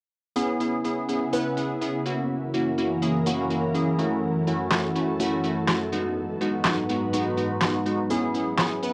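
Dance-pop in C# minor at 124 BPM in a straight 4/4, this brief cut from a longer piece feels confident yet bittersweet, tuned slightly low to A4 = 436 Hz. A glassy, crystalline wavetable pluck enters at 0.4 seconds and sits up front, its bright, detuned notes striking with a fast attack and then decaying, carrying a chorus effect, a ring-modulated edge, a noise layer and a moving notch filter sweep. Just behind it, an ethereal, airy pad of detuned sawtooth and triangle voices in unison holds sustained chords with a slow attack and long release, softened by ensemble chorus and its own built-in reverb. At 4.7 seconds a deep electronic snare layered with handclaps arrives, overdriven and pushed forward, with a cassette-tape grit. The harmony moves from C#m7 to F#7, F#m7 and G#m7 before returning to C#m7, all set in a wet studio reverb on a home cassette recording.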